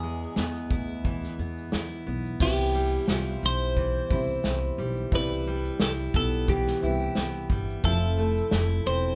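A bright, twangy twelve-string electric guitar carries the melody over a dark, full-bodied fingerpicked acoustic guitar and a growly pizzicato upright bass, with an up-front unplugged drum kit of bundle sticks, tight kick, snare, shaker and crash joining at 0.2 seconds in this tender, wistful acoustic pop excerpt at 88 BPM with a light sixteenth-note swing. At 2.4 seconds the harmony moves from E to Cmaj7 and a mellow, woody upright piano slips in behind the band, before an Fmaj7 arrives at 7.8 seconds. The players sound live together in one large studio room with a moderate reverb.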